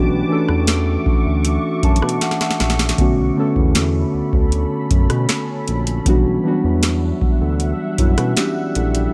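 Moody and sensual, this short contemporary R&B excerpt moves at a straight 78 BPM in 4/4, resting on a Dmaj9/B chord before shifting to Em9/B at 6.1 seconds. Muted, felt-like synth keys with a warbling, vintage chorus sit up front beside a mellow, smooth synth bass, while a deep, detuned ambient pad swells slowly in the background with its own built-in reverb. A booming analog drum machine with a tonal snare and metallic hats enters at 0.5 seconds, and a drum fill at 2.2 seconds overlaps a brief keys fill, all in a dry, close-sounding mix.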